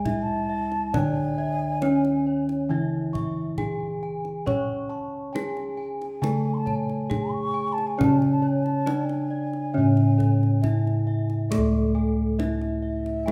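A steady, straight 4/4 pulse at 68 BPM underpins this stately, shimmering fragment of Javanese gamelan in C# pelog, with a tight kendang entering at 0.1 s. An up-front bronze metallophone struck with a horn mallet carries the melody in a boxy, warm tone. Meanwhile, a mid-forward wooden-mallet metallophone supplies accompaniment, and round, soft bossed gongs with padded beaters anchor the bass. Arpeggios come from a metallophone whose paired tuning produces shimmering beats, joined by background gongs, while a distant, hollow bansuri with vibrato adds a pure second line above, all set in a recital-hall reverb.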